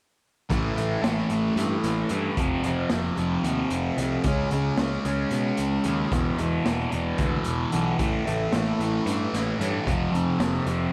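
Trippy, dark psychedelic rock in 7/8, this excerpt has a bright, double-tracked fuzz guitar riff with phaser up front, cycling through A5, F5, C#5 and E5 power chords, over an overdriven, punchy picked bass and a gritty, saturated garage drum kit whose small pumping room and rolled-off top sit beneath the guitar, all under light reverb.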